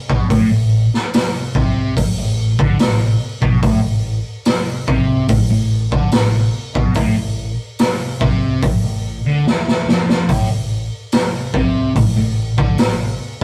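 This excerpt of psychedelic rock opens with a fuzz guitar riff, a fingered electric bass and a raw garage drum kit all entering together at 0.1 seconds, settling into a slow, straight 4/4 at 72 BPM in A minor. The mood is hypnotic and mysterious, anchored on a single A minor chord throughout. The double-tracked, picked guitar sits up front, its distorted fuzz tone colored by a phaser as it works a low riff. The drum kit is punchy and gritty, with a high-tuned snare, a rolled-off top and a mid-forward small-room character, and it breaks into a fill from 9.5 to 10.3 seconds. Beneath them the bass is dark and round but very quiet, while the whole take carries the rough, saturated feel of a rehearsal room with a short, wet booth ambience.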